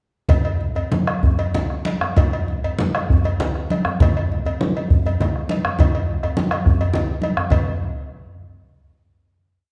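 West African traditional drum ensemble music in 12/8, powerful and driving, speeding up from 127 to 150 BPM (dotted quarters) across a short complete piece that closes with a final hit at 7.5 seconds. A deep, close djembe with metal rattles, struck with hard hands, sits beside a round, vintage-sounding bombo placed up front, joined by bright, thin-skinned, damped congas and a metallic cowbell carrying a bell pattern, all four playing from 0.3 to 7.6 seconds. The dark production places the ensemble in a wet recital hall reverb.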